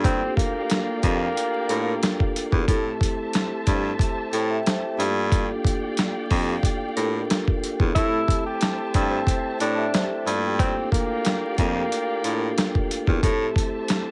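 Opening on a gritty, overdriven sampler-style drum kit with a thumpy kick, a punchy baritone saxophone bass up front, ringing soft-mallet vibraphone with a cassette-tape tint and expressive bowed studio strings holding sustained chords, this tough, moody boom-bap hip-hop excerpt swings lightly over alternating Gm7 and Am7 beneath vinyl crackle and light reverb, while a breathy tenor saxophone plays a subtoned jazz melody for the first 2.2 seconds and returns from 8.0 to 12.7 seconds.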